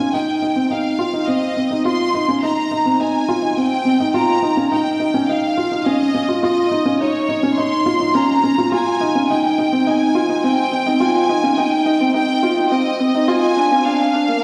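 Intimate and cinematic, this piano and strings electronica excerpt in F minor at 105 BPM is a build-up, with a mellow, felt-muted upright piano riff sitting up front beneath a biting studio violin section carrying the high melody with light vibrato, both parts touched by digital delay and bathed in a wet scoring-stage reverb within a dark, filtered production as the chords move from F7 through Eb7 and Abmaj7 to Bb7.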